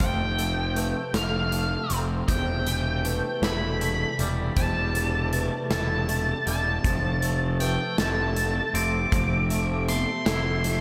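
A big, arena-sized sound, steeped in a lush hall reverb, fills this 10.8-second cut from a longer post-rock piece. Up front, a dark, distorted octave-fuzz lead guitar carries the melody through a slapback echo, while a growly, overdriven picked bass anchors the low end. A big rock drum kit, with a punchy kick, a medium-tuned snare and hi-hat, drives the 6/8 pulse. Further back, a clean, twangy electric guitar plays fingered arpeggios through tremolo and slapback echo, and a vibraphone with soft mallets adds mellow, airy arpeggios with a fast motor vibrato. A very quiet, morphing wavetable pad with a detuned, bright edge sustains chords as the harmony moves from Fmaj7 to C6/E and back, giving the passage a hopeful, euphoric lift.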